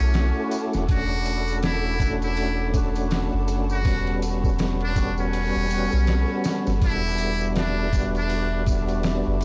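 A swung 81 BPM trip hop groove in 4/4 comes from a pitched-down, compressed sampler-style kit entering at 0.1 s, with a thumpy kick, medium-tuned snare and ride cymbal, plus a tambourine tucked in the background, all resting on a round, up-front dub sub bass. In E dorian over Dmaj7, A13/E and Em7 chords, a lightly overdriven tonewheel organ with key click and slow rotary swirl, a dark, detuned analog pad and a flickering granular texture build a brooding, hypnotic haze. A distant, buzzy metal-muted trumpet carries a jazz-style melody with light vibrato and tape echo until 8.6 s, all framed by a dry, gritty hardware sound with vinyl crackle in this brief cut from a longer piece.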